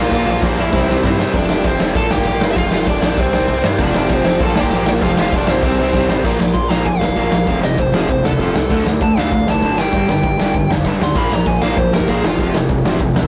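A rough rehearsal-room sound with warm saturation and light reverb frames this energetic, rebellious punk rock excerpt in F major, driving along at 196 BPM in a straight 4/4. Up front, a big rock drum kit hits with a punchy kick, a medium-tuned snare and bright crash and ride cymbals, opening with a fill at 0.1 seconds and adding another just before the lead guitar solo begins at 6.2 seconds. Behind it, a bright, compressed distorted electric guitar and a dark, hollow-body overdriven semi-hollow guitar play picked riffs. The semi-hollow drops out briefly before returning at 3.8 seconds. A gritty, aggressive synth bass built from sawtooth and sine tones with oscillator sync, ring modulation and a plucky filter anchors the low end in the background. A smooth, dark, overdriven lead guitar carries the melody from the start and steps forward into a solo over a brief turn through F, D minor and G5 before the excerpt cuts off.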